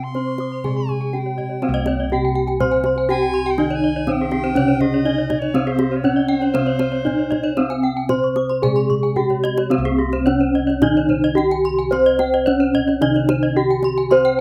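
Balinese gamelan at 109-122 BPM in C pelog, shimmering and brilliant, where an up-front bronze metallophone carries the melody over a softer low metallophone accompaniment, round beating bossed gongs in the bass, two bright horn-mallet metallophones spinning arpeggios with paired-tuning shimmer, one airy and the other close-miked, dry and full, background kendang played with soft hands, and a pure, chiffy alto recorder adding a second line until 7.7 s, before a drum fill at 9.2 s leads into a new section, all in a rough home-demo mix with moderate studio reverb, cut from a longer piece.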